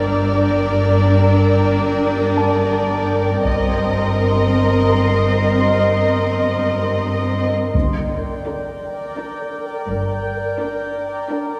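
Tense and mysterious, this cinematic suspense cue in 3/4 at 84 BPM sits in G minor over a Gm to Cm7/G progression, with violin sections carrying a smooth, vibrato melody and a richer second line above expressive, soft-attack violas, while cello and double bass sections hold a bowed low G in the background. A bubbling, resonant sawtooth texture with random filter steps, chorus and its own reverb sustains chords throughout, joined by a faint, focused high violin texture until 3.1 s and a mellow, felt-muted upright piano from 2.4 s. Hard-stick taiko drums play through the middle from 3.5 s, timpani strike a G near 7.7 s as the second section begins, and a concert hall reverb places the ensemble further back in the room in this fragment of a longer piece.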